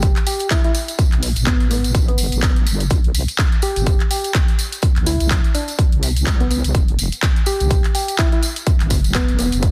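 A punchy electronic kick drives this bass house cut at 125 BPM in 4/4, with a 57% swing on the sixteenths giving the groove a loping bounce, while a house drum kit adds handclaps and tape-softened hi-hats and a jingly acoustic tambourine sits low in the mix with a live-room ring. The mood is aggressive and gritty, carried mostly by the wobble bass, a heavy, saturated blend of detuned sawtooth and sine voices with chorus, overdrive and sidechain pumping, sitting up front in the low register. Above it, a soft struck synth lead plays the melody in a round, keys-like FM tone that decays after its fast attack, colored by chorus, phaser, vibrato, a cassette-tape haze and delay. The harmony moves from Gadd9 to C5 at 2.9 seconds, then falls away at 6.7 seconds for the final stretch. The mix is dry and close, with a dense, heavily limited modern master, and the passage is cut from a longer piece.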